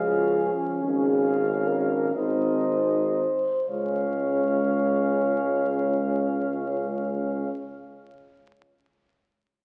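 The full brass band sounds together from the first moment in this brief, serene fragment of a classical, hymn-like piece in Db major. It moves in a slow, rubato 6/8 at 37 to 52 beats per minute, counted in dotted quarters, and it slows down through its opening 3.7 seconds before a second phrase begins. A mellow solo cornet carries the melody high in its range, gentle in attack with a light vibrato and a smooth top, though it sits softer than the French horn section. The horns sing the second line beneath it with a light vibrato and come through as the most prominent voice. The close-miked, warm trombone section and a dark euphonium, set in the background, fill out the accompaniment, while a tuba anchors the bass with vibrato and a roomy, distant tone held up front. The harmony rests on Db, shifts to Db over Ab and then Ab, and returns to Db at 3.7 seconds, all heard through the wet reverb of a concert hall and the crackle and dulled top of a very old 78 rpm record.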